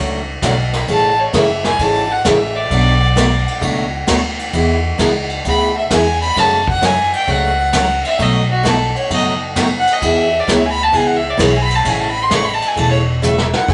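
Recorded with a band playing live in one room, this playful, swinging western swing excerpt sits in moderate studio reverb. The upright bass is plucked on gut strings for a woody, thumpy bottom, while a bright, full-bodied jumbo acoustic guitar picks the accompaniment. The vintage kit joins at 0.4 s with brushes on the snare, dark cymbals, a punchy kick and a rolled-off top, placed up front in a small-room sound. A rich, earthy fiddle, bowed by a single player, carries the melody from 0.9 s over changes that run from Dmaj7 through Bm7, E and B7 before settling on A. The drums close the passage with a short fill at 13.2 s.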